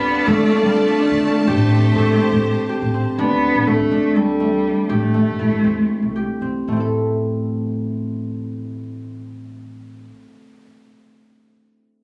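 Contemporary chamber music in 7/8, hypnotic and pensive, this excerpt from a longer piece moves in A minor at 225-251 BPM counted in eighths, slowing between 3.2 and 6.7 seconds as the chords shift from Dm to Am7 and settle on Am. Up front, a fingerpicked concert harp rings out arpeggios, while a bowed cello sings an expressive melody with vibrato and portamento until 6.2 seconds, and a woody, thumpy pizzicato upright bass on gut strings holds the low end. A clear, lush symphonic string section sustains focused chords only until 3.2 seconds, all set in moderate reverb with a phone-in-the-room capture, club ambience and compression.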